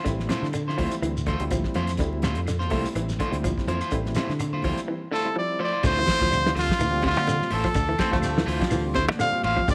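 Afrobeat with a driving, defiant feel, built on a round, punchy fingered bass and a dry, damped 70s drum kit with a fat snare, while two slightly broken-up electric guitars layer lo-fi background arpeggios and picked stabs over a barky, gritty tine electric piano with fast tremolo, grainy shekere, ringing high-tuned congas and woody claves, until a bright trumpet with scooped notes takes the lead up front at 5.1 seconds and an edgy, forceful baritone saxophone cuts in briefly at 8.0 seconds, all in light reverb.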